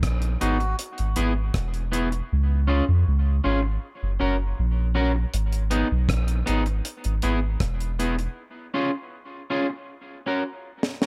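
Heavy and spacious, this short dub reggae passage moves at 79 BPM in a straight 4/4, cut from a longer piece and set in studio reverb. A deep, round sub bass with a soft, fast-attack tone sits up front from the start, and it drops away at 8.3 seconds. A dry, acoustic drum kit with a high-tuned snare, tight kick, hi-hat and rim click plays throughout, closing with a drum fill from 9.9 seconds. An electric guitar at the edge of break-up, twangy and picked, comes in at 0.4 seconds, its dub echo trailing over chords that cycle through G#m, E, C# and F#. A reedy, nasal melodica appears for only a brief moment in the background, also carrying dub echo. The whole stretch works as a break, with one part muted between 2.3 and 5.3 seconds.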